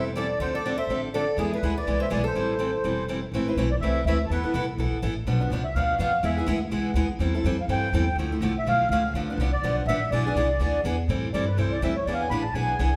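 A wet recital-hall reverb, with a 1.5-second decay typical of a church or concert hall, surrounds this fiery, swinging excerpt of acoustic string swing in A minor, taken at a brisk 247 BPM in 4/4 with a light swing on the eighth notes. A reedy, sweet yet dark accordion carries the melody throughout, its light tremolo tuning lending a smooth shimmer to the line. Beneath it, an up-front picked steel-string acoustic guitar supplies bright, fresh-stringed accompaniment, while a pizzicato upright bass sits forward in the mix with a woody tone. A boxy archtop guitar adds a picked second line only at the opening, dropping out at 3.0 seconds. The minor harmony moves through chords such as Dm7, E, Am7, Bdim and E7, and from 11.1 seconds the accordion takes a solo to close out the fragment.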